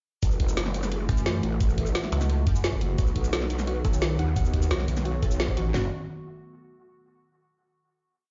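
A dry, dark mix heard as if through a big sound system in a bare stone room carries this short, aggressive piece of dark technical drum and bass in F# dorian at 174 BPM, where a snarling, detuned growl bass with formant-filtered, ever-changing wobbles and a heavy, distorted pulsing wobble bass that answers it sit up front over two layered electronic drum kits (one with a knocking kick, cracking snare, bright hats and toms in a broken beat, the other with a woody snare, metallic hats and shaker), while a deep, moody analog pad holds sustained chords, moving from F#m7 to B, and a soft, round pluck enters at 3.0 seconds with a dub-echoed 16-step arpeggio, before a band accent at 5.4 seconds gives way to a final F#m7 chord.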